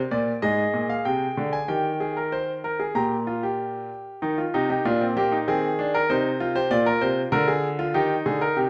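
A clear grand piano opens at 0.1 s, setting out a solemn, serious baroque-style fugue in three voices in Eb major. The tempo is a steady 96 BPM in 4/4 with a straight feel, and the solo piano spans from Ab2 up to Bb5. Its tone is natural and up front, placed in a reverberant stone room whose 1.3-second tail adds a sense of space around each line. The harmony moves from Fm7/Ab to Eb and Bb5 before a second passage begins at 4.2 s, returning to Eb and passing through Fm7/Eb and Bb before settling on Eb again. The piano plays until 8.7 s, and the recording is cut from a longer piece.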